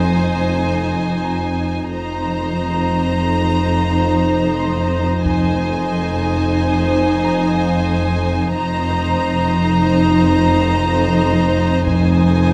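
Wet scoring-stage reverb surrounds this ominous, mysterious suspense cue for a cinematic film score, a 12.5-second excerpt cut from a longer piece, moving in 5/4 with a straight feel over a single Fm7 chord. A rich chamber violin section carries the bowed melody high between Ab5 and Bb5 with focused vibrato, while a second, clearer and more distant violin section holds a line on C5. Beneath them a smooth-topped viola section sustains Eb4, and the low end is anchored by a warm, expressive cello section on F2 and a close, focused double bass section on F1, both sitting in the background. A vintage analog drone on F2 blends sawtooth and pulse waves with pulse-width modulation, chorus and a slow attack, its mellow, warbling tone evolving under the strings. A very quiet concert harp adds bright, ringing fingerpicked texture between C5 and C6, and a very quiet taiko ensemble with heavy sticks in a small room strikes only from 5.2 to 6.5 seconds and again from 11.9 seconds to the end.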